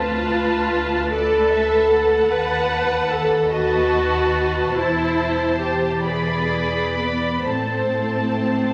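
Yearning and melancholic, this short passage from a longer classical piece is a slow romantic movement for string orchestra, moving in a rubato 6/8 at roughly 41-52 beats per minute counted in dotted quarters. A chamber-sized violin section carries the melody with vibrato and expressive portamento, its tone warm with a smooth top, while a second violin section adds a lush, even line above it that sounds rich and symphonic yet distant. The violas fill in the accompaniment with a focused, up-front sound, bowed with vibrato. Underneath, the cellos and a dark double bass section share the bass, both softly attacked and sliding expressively between notes, the basses sitting in the background. All five parts play together for the full 8.7 seconds, bathed in a wet recital hall reverb, as the harmony drifts from Bm7b5/D through B7/D#, Am/E and E7 before settling on Am at 7.5 seconds.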